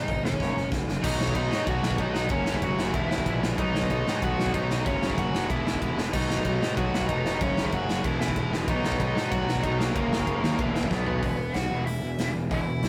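A dark, smooth overdriven lead guitar melody opens this rowdy, rebellious punk rock excerpt at 188 BPM in B major, over picked riffs from a very quiet cranked stack guitar and a tight distorted guitar in the background, with a growly fuzz bass and a punchy, up-front big-room drum kit with bright cymbals arriving at 0.1 seconds, a second, double-tracked tight guitar riff joining at 1.0 seconds after a drum fill, and the beat dropping to half time at 11.2 seconds, the whole captured as a rough rehearsal-room recording with light reverb.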